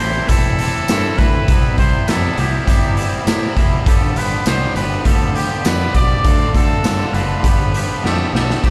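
Wistful yet upbeat, this short indie rock excerpt moves at 101 BPM in a straight 4/4, cut from a longer piece and heard as a live gig through a club PA with small-room ambience and club reverb. A clear trumpet carries the melody in a vintage pop style, with light vibrato and scooped notes, colored by slapback echo and digital delay. Behind it, a biting overdriven guitar with subtle chorus and a twangy, compressed clean guitar with warbly pitch drift play riffs from the background, both touched by slapback echo. A growling fingered bass, overdriven and amped, anchors the low end, while a raw garage drum kit enters at 0.3 seconds, sitting up front with a boomy kick, medium-tuned snare, hi-hat, tambourine and crash, saturated and gritty in a pumping stone room. The chords drift through Am7, Cmaj7, G7 and Dm7, and a drum fill at 8.0 seconds closes the passage.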